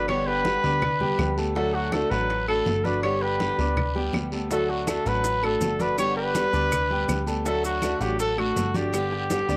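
A straight 4/4 pulse at 163 BPM drives this relaxed Cuban son and guajira fragment in D major, cut from a longer piece. Congas, bongos, claves and a raspy, band-limited guiro enter at 0.1 seconds, with the bright, thin-skinned congas and woody claves sitting close and dry in the background, the round, low-tuned bongos very quiet, and grainy maracas joining at 4.5 seconds. A punchy, funky analog bass with a fast-attack filter pluck anchors the low end, while a full-bodied, fingerpicked jumbo steel-string guitar, finger squeaks audible, supplies accompaniment and a natural-toned baby grand piano spills arpeggios up to G6. Up front, a mellow solo trumpet carries the melody between F#4 and C#5 with light vibrato and scooped notes, sounding distant and roomy. The harmony rocks between Gadd9 and D before settling on G at 8.9 seconds. Trumpet, guitar and piano carry a cassette-tape softness, and a moderate spring reverb gives the whole home-recorded take a warm, easygoing glow.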